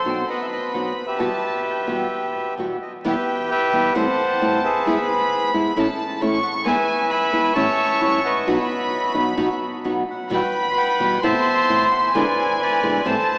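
Drenched in a vast, echoing cathedral reverb and colored by vinyl crackle and a small-speaker sound, this dramatic, passionate tango excerpt moves with a rubato feel: a reedy, up-front bandoneon carries the melody over a smooth, gut-string violin section in period style on a second line, while a boxy, fingerpicked nylon-string guitar supplies the accompaniment and a bright, biting symphonic string section adds very quiet, distant stabs.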